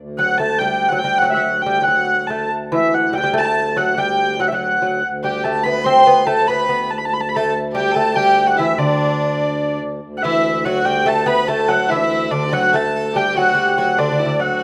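A dark, woody hurdy-gurdy carries the melody up front in this rustic, ancient-sounding medieval dance in D mixolydian at 96 BPM in 6/8, entering together with a delicate fingerpicked lute with gut double strings just after a low reedy harmonium drone begins, while a clear fiddle with light vibrato adds a second line from 5.2 seconds, all caught in a rough home demo with small-room ambience and light reverb.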